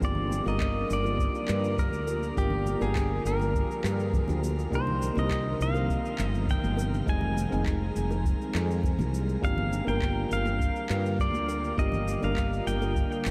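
A straight 102 BPM groove in 4/4 rests on a dry, deep electronic kick and a round, growly fretless bass up front, with overdriven electronic cabasa and handclaps and very quiet congas and bongos adding light percussion to this smooth sunset chillout excerpt. Over a Gm7, Cm7, Fm7 and back to Gm7 progression, a bright, twangy pedal steel guitar carries the slide melody with delay, while a soft FM electric piano with chorus and delay plays the accompaniment. An airy, warbling pad holds sustained chords and a glassy harmonics texture drifts in the background, all bathed in a huge ambient reverb that leaves the mix dreamy.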